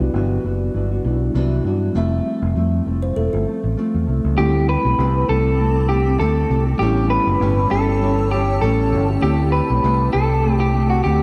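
Mellow and wistful, this short indie pop excerpt moves at 99 BPM in 4/4 with a gentle swing on the sixteenths, drifting through chords from Cmaj9#11 and Fmaj7 to D7sus4 and A7. From the start, a fingered electric bass sits up front with an amped, warm tone, under a dark, thumb-plucked nylon-string guitar with subtle chorus and a warbly pitch drift and a mellow tine electric piano with a cassette-tape softness. A woody, ringing kalimba surfaces briefly in the background from 3.0 to 4.2 seconds, its airy plucks trailing analog delay. At 4.4 seconds an electric guitar through a small old amp takes the melody, picked, slightly broken-up and compressed with a lo-fi edge, carrying chorus and analog delay. Shortly after, at 4.9 seconds, a granular cloud pad fades in with a slow attack, its blurred, detuned, evolving chords hovering over the mix. A lush hall reverb soaks the whole mix, giving it a dreamy, hazy atmosphere.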